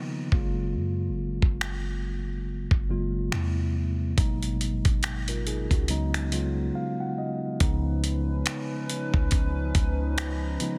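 Sensual and late-night, this contemporary R&B piece moves at 70 BPM with a swung sixteenth feel, as an up-front, mellow tine electric piano carries chords from Gbmaj9 through Am9 and Abm9 to Db9sus4 over a deep, boomy 808-style bass and a gritty, sampler-style drum kit of finger snaps, hi-hat and thumpy kick with a softly clipped snare, before the piano fills at 6.3 s into a brief break at 6.7 s and a hollow, flute-like pad with chorus joins at 7.6 s over a Db9 chord, all in a dry, dense, heavily limited master.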